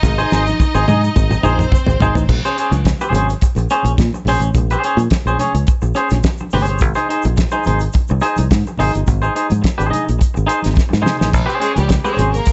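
A drum fill on a damped 70s kit with a fat snare, tight kick and dark cymbals opens this driving, glamorous disco excerpt at 106 BPM in Bb dorian, alongside a lush, intense, distant violin section with vibrato, a twangy, clean, compressed electric guitar and a punchy, foam-muted fingered bass, the guitar and bass both up front. The violins drop out at 2.3 seconds as the harmony moves from Ab to Bbm9, leaving guitar, bass and drums over very quiet, saturated, soft-handed congas and a grainy tube shaker in the background, before another drum fill at 10.8 seconds and the strings' return at 11.6 seconds. Light reverb and small room ambience frame the mix.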